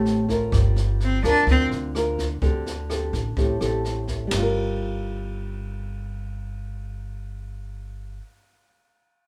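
Melancholic and smooth, this short bossa nova excerpt in straight 4/4 is cut from a longer piece and captures a band playing together in one room with light reverb. Thumb-plucked nylon-string guitar, small-sounding and up front with audible finger squeak, carries the harmony, moving from a rootless D7sus4 to Gm7, back to D7sus4 and on to Gm7. An upright bass, plucked on steel strings, gives a woody, thumpy low end close to the listener. A jazz kit played with brushes sounds distant and roomy, with dark cymbals, a medium-tuned snare, rim click and a boomy kick, and it drops out at 4.4 s. A bowed cello, brilliant in tone with light vibrato and an airy, earthy sound, steps forward for a brief melodic phrase from 1.0 s to 1.6 s.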